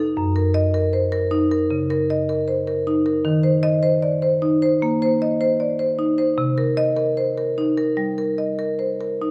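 A solo marimba played with medium mallets sits up front, its warm tone spanning Gb2 to Eb5 in this short excerpt of a contemporary classical piece. The mood is playful, moving at a loose, rubato 76 BPM in 4/4 as the harmony passes from Gb6 to Eb5 and then to Cm7 at 6.4 seconds. A moderate recital-hall reverb gives the instrument a resonant halo.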